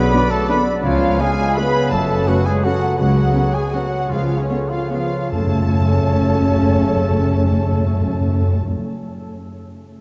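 Full orchestra, heard from the start, with a rich violin melody over dark lower violins, a hollow flute, a mellow clarinet that drops out at 5.1 seconds, very quiet French horns, harp arpeggios, trumpet stabs, clear trombones, a viola section in the background and a lush cello and double bass bass line, plays a dark, bittersweet ballroom waltz in F# minor at 137-181 BPM, rubato and slowing from 2.5 to 5.3 seconds, with timpani returning at 5.3 seconds, all steeped in a vast, echoing cathedral reverb.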